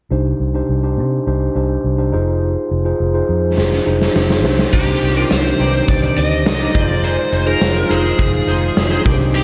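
A moderate lush hall reverb gives this short cut of 1980s-style pop a big arena sound, moody and nostalgic in C minor at 104 BPM, moving between Cmadd9 and Fm7. A mellow tine electric piano with slapback echo and a dark, round, foam-muted fingered electric bass open the piece up front, and the big rock drum kit, with its punchy kick and bright stone-room character, comes in with a fill at 3.6 seconds. At 4.7 seconds an overdriven lead guitar through a small cranked amp carries the melody with delay and tube saturation, while a twangy, chorused clean electric guitar plays a riff over a shimmering pulse-width pad sitting in the background.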